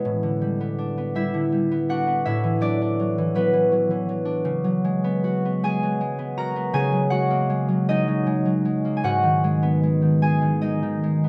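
A gently swaying 6/8 pulse moves with uneven, rubato beats, giving this classical solo harp piece a floating, unhurried feel. The concert harp plays alone for the whole 11.3 seconds of this short passage cut from a longer work, its fingerpicked notes ringing out from low G#2 up to A#5. Its tone is bright and acoustic, sitting up front, captured by close, detailed microphones with a light reverb around it. The harmony drifts through lush, colorful chords, moving from A11 to D69/A, then C#7sus4 and F#69/C#, settling on G#m7 at 9.0 seconds. The mood is peaceful and dreamy, like a quiet reverie suspended in time.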